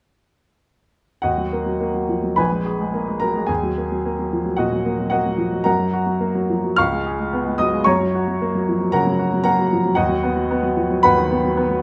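This is a virtuoso classical piano study, stormy and agitated in mood, taken from a longer piece. A single baby grand piano plays alone from 1.2 to 11.8 seconds at about 110 BPM in 4/4, its pulse pushed and pulled with free rubato so the beats fall unevenly. The instrument sounds clear, natural and up front, ranging from a deep Bb1 up to a bright F6. The harmony starts in E-flat minor, passes through Abm9/Bb, then turns toward G-flat and Db7 before settling on B/D# near 10.0 seconds. A moderate reverb from a large studio, with a decay of 1.1 seconds, gives the piano a sense of space around its close, direct tone.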